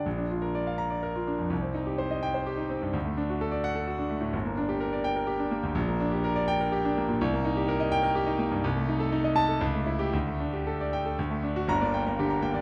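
A clear concert grand piano carries this passionate, stormy classical study alone from 0.0 to 12.6 seconds, its deep bass and smooth, vintage tone placed up front by close, detailed microphones. Set in G minor and 3/4 time, the virtuoso writing moves with a rubato feel at a tempo between 112 and 130 BPM, spanning the keyboard from G1 up to Bb5. The harmony opens on Bb and travels through Cm, D and Gm, then moves through Gm/Bb, Cm7, Adim/C and A7/C# before a Dsus4 resolves to D and settles on Gm at 11.7 seconds. A moderate recital hall reverb, with a decay of 1.8 seconds, gives the instrument a sense of space around its detail. This short passage is cut from a longer piece.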